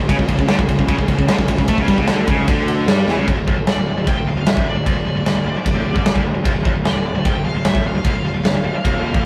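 A straight, driving 4/4 pulse anchors this aggressive, relentless heavy metal clip, cut from a longer piece and set in a rough rehearsal-room recording with light reverb. Up front, a big acoustic rock kit with a dark, smooth big-room sound pounds out kick, medium-tuned snare and ride cymbal. A growly, fuzz-drenched fingered electric bass, captured direct and amped, holds the low end throughout. Behind them, a heavy high-gain guitar and a tight distorted guitar grind out bright, picked riffs. A double-tracked, overdriven garage guitar joins them only until 3.3 seconds, when a drum fill at 3.1 seconds carries the chord change into a D minor passage. From 3.7 seconds, a bright, high-gain lead guitar rides above the wall of riffs with a high melody.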